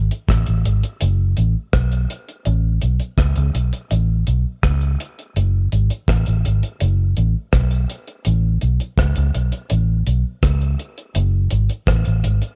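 A vintage muted fingered electric bass anchors this short lovers rock reggae excerpt in F# minor, its dark, round, foam-muted tone sitting up front and moving between F#1 and C#2 at an easy 83 BPM in 4/4. A deep reggae drum kit of kick drum, hi-hat and rim click joins at 0.1 seconds, dry and smooth with a tight kick and a rolled-off top. The room is nearly free of reverb, giving the bittersweet, smooth groove an intimate, close feel through to 12.6 seconds.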